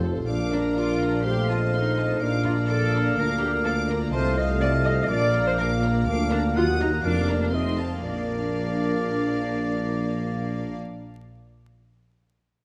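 Heard through a soft vinyl crackle and the wet bloom of a scoring stage, this short cinematic cue has a mischievous, playful air, with a bowed violin section carrying the melody in an intimate sul tasto tone with light vibrato. Around it, a second violin line, a floating cello section, a smooth, very quiet viola section and a dark double bass section fill out the strings, while a distant, roomy oboe and a faint clarinet add second lines and a dark bassoon murmurs accompaniment. A vintage-sounding French horn section holds sustained chords in the background over a tuba bass, and the harmony settles back onto its home chord at 8.0 seconds as a brief new section begins.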